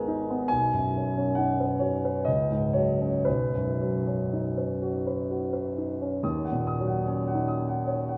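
Impressionist classical solo piano, dreamy and luminous, moves in an unhurried 3/4 at 56-76 BPM with a free, rubato feel in B major, tuned to A4 = 445 Hz. A concert grand carries the whole 8.2-second fragment of a longer piece alone, its tone warm and up front, with deep bass and long sustain across a span from G#1 to D#6. The harmony drifts through open, added-tone colours: G#madd9, Badd9, C#sus24, and a return to Badd9. At 6.2 s a new passage opens on D#m7. A wet cathedral reverb with a 4.8-second decay places the instrument in a church or concert hall, so each chord hangs in a resonant, glowing space.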